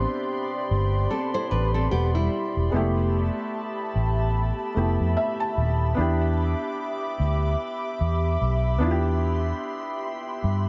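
Moody and longing, this slow R&B excerpt at 74 BPM in A minor with a gentle sixteenth-note swing sets a soft, muted felt upright piano and an ethereal, glassy FM pad with ensemble chorus over a round, foam-muted electric bass that sits up front, while a fingerpicked nylon-string guitar with digital delay adds brief arpeggios from 1.1 to 2.7 seconds and the piano plays a fill around 4.8 seconds, all moving through Am11, Fmaj9#11, Em7 and Cmaj7/E in a small, intimate room.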